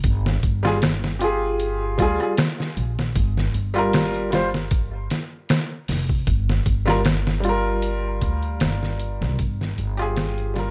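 A pizzicato upright bass and a compressed, sampler-style drum kit open this smoky, cinematic trip hop excerpt together at 0.0 seconds, setting a slow, lightly swung groove. The pitched-down kit is gritty and tape-toned, with a thumpy kick, a medium-tuned snare and hi-hat sitting up front. The acoustic bass has a woody, steel-string character with tube saturation, holding down the low register. At 0.6 seconds a felt-muted upright piano joins in accompaniment, soft and intimate, its mellow tone carrying audible action noise, a thin felt sound, harmonic tremolo and tape echo. The harmony moves from Fmadd9 to Gm7 and back, and the dry, small-room recording has a gritty hardware edge with transformer saturation before a fade-out begins at 7.3 seconds.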